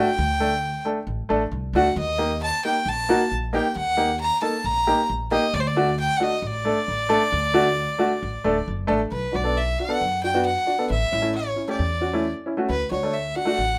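Klezmer at 134 BPM in 4/4, soulful and bittersweet, with a clear, biting violin carrying the melody up front, its airy, nasal bow sitting close over a bright, slightly detuned upright piano whose woody, worn sound and audible action noise lend an intimate feel. A pizzicato upright bass with steel strings enters at 0.2 s and gives a woody low end under the piano's long sustain. Moderate studio reverb holds the trio together, and the harmony settles into B minor at 9.1 s as the music moves into a new section before the clip cuts off.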